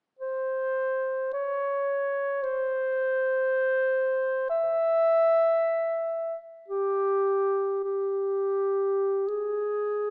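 Meditative and mournful, this short classical excerpt is taken from a longer work for unaccompanied clarinet. A single dark-toned clarinet carries the whole piece alone, sitting up front and staying within a compact span from G4 to E5. The playing is expressive and free, with a rubato feel that stretches the underlying 4/4 pulse. The instrument sounds from 0.2 to 10.1 seconds, surrounded by a moderate recital-hall reverb that lingers for about 1.6 seconds. The overall sound comes across as if heard through a small speaker.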